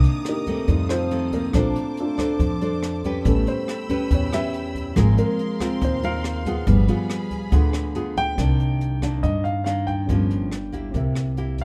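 Smooth and wistful, this bossa nova fragment in C minor moves at 140 BPM. A mellow, dark baby grand piano and an up-front, fingerpicked nylon-string guitar with audible finger squeaks accompany a woody, growly pizzicato upright bass and a brushed jazz kit with a boomy kick, hi-hat and rim click. A lush, bowed violin section holds sustained chords with vibrato until 8.4 seconds, overlapping a grand piano melody with an intimate, warm tone that enters at 8.2 seconds, while chords such as Cm9, Bbmaj9 and G7b9 shape the harmony under light reverb.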